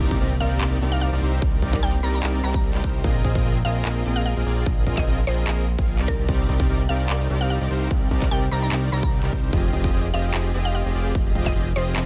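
Future bass with a dreamy, lush half-time swing, where a very quiet ringing concert harp arpeggio and a faint electronic impact open the first seconds beneath huge, detuned supersaw chords with subtle chorus and sidechain pumping, a fat, saturated analog bass sits up front, a punchy electronic kick and a crisp big-room kit of handclaps and hi-hat drive the groove, and a woody, round FM mallet pluck carries the melody in the background through chorus, cassette-tape color and delay over a Cm9, Bb9sus4 and Fm9 progression.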